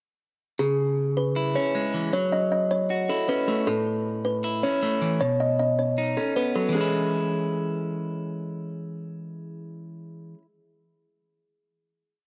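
Brooding and hard-hitting, this short, complete trap piece in C# minor moves at 156 BPM with a half-time feel, its kalimba carrying a looping, sample-like melody with a woody, hollow-box pluck and a ringing delay from 0.6 to 7.9 seconds. Beneath it, an up-front electric guitar at the edge of break-up plays a twangy, scooped arpeggio that rises and falls in eighths until 10.5 seconds, tracing C#m, F#m7, A and Badd9 through the breakdown before settling on a final C#m chord at 6.7 seconds. A moderate, lush hall reverb lends the whole piece a spacious atmosphere.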